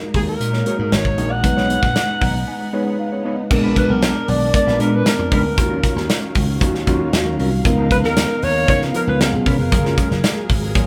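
This is polished 1980s jazz-funk pop, upbeat and glossy, moving at 116 BPM in a straight 4/4 in F# major, heard in an excerpt cut from a longer piece. A breathy alto saxophone carries the melody from 0.2 s, mellow and jazz-styled with vibrato and scooped notes, sitting distant and roomy with a delay trailing its phrases. Underneath, a punchy, amped slap bass and an up-front acoustic drum kit with a tight kick, medium-tuned snare, hi-hat and crash drive the groove, while bright, high-tuned congas struck with hard hands are barely audible. A worn, slightly out-of-tune tine electric piano supplies clean, direct accompaniment and plays a fill from 2.0 to 3.5 s that carries through a short break starting at 2.5 s. Further back, a dark, fingered electric guitar repeats a riff and a bowed string section holds sustained chords, sul tasto and intimate with a smooth top. The harmony opens on F#69 and B69, then moves through A#7b9, D#m9, C#13 and C#7 before resolving to F#maj9, all captured as a band playing together in one room with moderate studio reverb.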